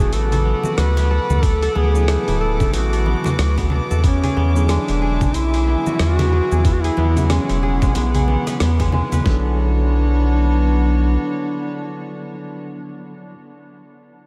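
A loping 92 BPM groove in 4/4 with a 16th-note swing anchors this hypnotic, meditative organic downtempo excerpt in B dorian, where a gritty, overdriven sampler-style kit brings hi-hat, rim click and shaker from the start, a thumpy kick and medium-tuned snare joining at 1.4 seconds, and distant, very quiet congas under a deep, round analog bass that sits up front with sidechain pumping. Over this, a duduk sings a smooth, scooped folk melody with vibrato and delay, while a fingerpicked, ringing kora adds crisp arpeggios through analog delay, a clean tine electric piano sits in the background, and a reedy, gut-string chamber section holds distant sustained chords, the keys and strings also pumping. Everything floats in a dreamy bath of huge ambient reverb as the chords move from D6 to E7 and settle on Bm7 at 9.3 seconds, just as the drums fall away.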